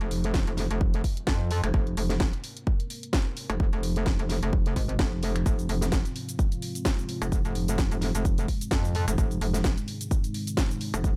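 A metallic wobble bass leads this bouncy, aggressive bass house excerpt, its saturated, compressed FM tone sitting up front with chorus and sidechain pumping, holding a single F minor chord throughout. A punchy electronic kick enters at 0.3 seconds, tape-warm and re-recorded in a small room, driving a swung groove. Around it, a house drum kit of finger snaps, hi-hat, shaker and a cracking snare adds layered, produced texture. Deep in the background, a moody, detuned sawtooth pad with a slow attack sustains chords through chorus, phaser and sidechain pumping. A barely audible downlifter passes in the opening 1.7 seconds, and the whole mix stays dry and close with little reverb.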